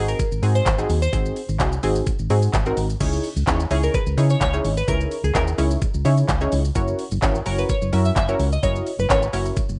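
Driving and bittersweet, this 128 BPM dance-pop passage in C# dorian is cut from a longer piece, moving from G#7 to C#madd9 at 3.0 seconds and on to F#7. Up front, a punchy, detuned sawtooth chord stab with chorus and sidechain pumping sits beside a round, dark hollow-body fingered electric bass that also pumps. Over them, a glassy, crystalline wavetable pluck with ring modulation and a filter sweep carries the melody above a layered electronic pop kit of knocking kick, bright hats, handclaps, shaker and crash, all within a rough home-demo mix with light reverb, a dulled top end and a tape-warm kit re-recorded in a large room.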